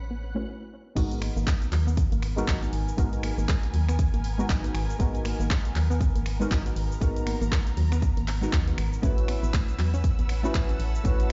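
A deep, mellow chord stab on an A69 chord opens this late-night deep house excerpt in G# minor, over a hollow, organ-like FM bass that sits up front, a veiled, con sordino studio string section and a faint shimmer of vintage string-machine violins. A soft, round pluck plays arpeggios in the background, and both the stabs and the pluck carry chorus and digital delay. The violins drop out at 0.5 seconds for a brief break, and at 1.0 seconds the drop arrives with the harmony moving to G#m9. A punchy, layered electronic kick and a dry, overdriven analog drum machine with cabasa, crash, finger snaps, handclaps and hi-hat drive a swung 119 BPM groove in 4/4. Every melodic part pumps against the sidechain, and the violins return at 9.0 seconds as the chord shifts back to A69. The mix is dark and warm, with little reverb, a stone-room character and a rolled-off top end, as if heard through a big sound system in a bare space.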